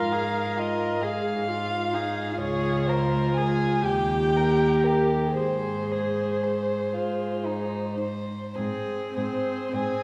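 A string quartet opens together in a solemn, melancholic slow romantic movement in Ab major, moving in a rubato 6/8 at roughly 33-45 BPM counted in dotted quarters. The first violin carries the melody with a dark, woody tone, a smooth top and vibrato. Beneath it, the second violin plays a second line, bowed sul tasto with an airy, soft-attacked sound and light vibrato that feels intimate. The viola fills in the accompaniment in a close, warm voice, similarly bowed sul tasto with an airy, soft attack and light vibrato. The cello holds a pure, floating bass up front and stops at 9.8 s, just before this fragment of a longer piece cuts off. A recital hall's reverb, with a 1.7-second decay, places the listener further back in the room, and the music moves into a new section at 8.6 s.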